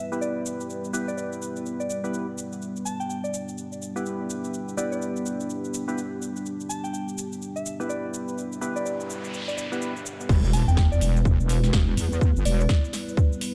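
Gritty and bouncy, this bass house excerpt in E minor moves at 125 BPM with a swung sixteenth feel, opening on a moody, detuned analog pad under a gentle FM bell melody with tape echo and hollow, organ-like stabs carrying 12-bit sampler grit and sidechain pumping, all set over a big-room drum kit of punchy snare, metallic hats, cabasa and crash. A noise sweep runs in the background from 8.9 seconds into an impact at 10.3 seconds, where the drop lands with a tight, up-front electronic kick and a heavy, saturated wobble bass. The production is dark, with light reverb.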